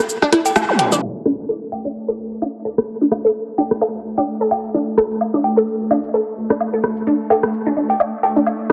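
Drenched in lush hall reverb and low-pass filtered, this sparse, clinical minimal techno fragment opens on a punchy, tape-tinged analog drum machine of hi-hat, rim click and shaker beside a squelchy, resonant blip pluck riff dressed in phaser, chorus and dub echo, overdriven electronic rim click, cowbell and woodblock with digital delay, and a brief zap at 0.7 seconds, before a very quiet, round analog bass slips in and a swarming, tense granular drone arrives at 1.6 seconds, all while a filter sweep plays on the synth from 1.0 seconds onward.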